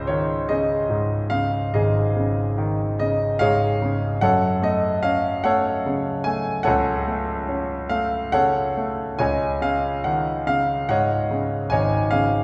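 A clear, worn grand piano sits up front and plays alone for this calm classical excerpt in Db major, moving at a rubato 49 BPM in 6/8 across a range from Ab1 to Ab5, passing from Dbsus2 to Gbm at 4.2 seconds and back to Dbsus2 at 9.2 seconds, all bathed in the wet reverb of a church or concert hall.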